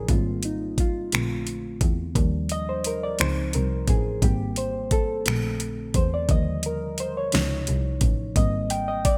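A reedy, slightly out-of-tune electric piano leads this tender, sensual slow R&B fragment in six-eight, its worn tone coloured by a lush chorus as it cycles through lush major-ninth chords from the opening second to the end at 9.2 seconds. Beneath it, a single bowed double bass plays smooth, even lines with gentle vibrato, while an up-front electronic kit, treated with gated reverb, adds finger snaps, metallic hi-hats, a knocking kick and a fat snare. The sound is close and dry, with bright 1980s-style digital production.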